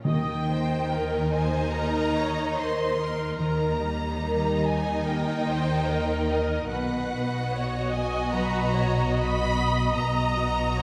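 Moving and hopeful, this rubato cinematic film-score excerpt opens with timpani that fall silent by 1.3 seconds, as lush bowed violins carry an expressive vibrato melody over a focused second violin line, smooth, even violas, rich cellos and up-front chamber double basses, while a warm, thumb-plucked harp rings out arpeggios in the background, the harmony moving from Eb to B at 6.7 seconds inside a wet scoring-stage reverb.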